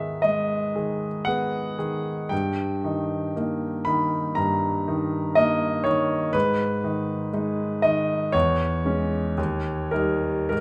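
Wistful and melancholic, this excerpt from a romantic nocturne for solo grand piano in G# minor drifts in 4/4 at a rubato 50-62 BPM, the intimate, up-front piano sounding clear and natural with long sustain and audible action noise as it moves from G#m through D#/G and C#m/E to a closing D#7, all bathed in the lush reverb of a large studio and tuned to A4 = 441 Hz.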